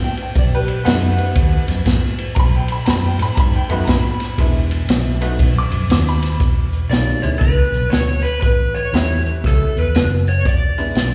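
Heard as a live gig through the venue's PA, with recital-hall reverb and small-room ambience, this soulful, gritty electric blues shuffle at 119 BPM in swung 4/4, cut from a longer piece, sets a jangly, metallic tack piano with slapback echo and a round, foam-muted fingered electric bass up front over a vintage acoustic kit of kick, snare, hi-hat and ride with a punchy kick and rolled-off top, until a dark, overdriven slide guitar played with fingerpicks and slapback echo takes the melody at 6.9 s as the chords move through B7, E7 and A7.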